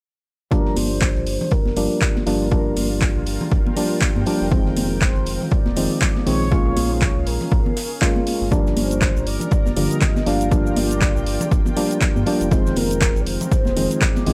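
A swung groove drives this smooth, hypnotic deep house passage, built on a punchy, tape-warm electronic kick up front, layered claps, dark hi-hats and shaker from a house kit, high-tuned congas with thick, damped skins under sidechain pumping, and a very quiet acoustic kit of hi-hat and rolled-off snare. A deep sine sub bass with octave pumps under hollow, chorused organ stabs that carry a filter sweep, while a round, horn-like sawtooth lead with vibrato sings through phaser, lush chorus and tape echo over a Gm7, Fm7 and Bbm7 progression. From 2.2 seconds a blurred, evolving granular pad drifts in the background, and the whole passage has a dry, gritty, transformer-saturated hardware character.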